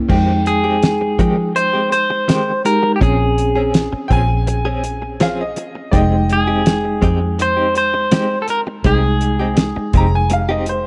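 Straight-eighth soul blues in F minor at 82 BPM, this short, soulful and smoky cut from a longer piece moves from Fm9 to Bbm9 and back to Fm9 over a steady 4/4. A cloth-damped drum kit sits up front with a dry, thuddy sound, fat snare, tight kick and dark cymbals, while a foam-muted vintage fingered bass adds a round, punchy low end. A reedy electric piano with fast tremolo supplies the accompaniment, and a direct-recorded clean electric guitar adds bright, compressed stabs colored by tremolo and analog delay. The melody comes from an electric guitar through a small old amp, twangy and slightly broken-up, entering at 0.5 seconds. At 4.1 seconds a brilliant, woody upright piano joins with a polished second line of long sustain, all set in light reverb and small room ambience.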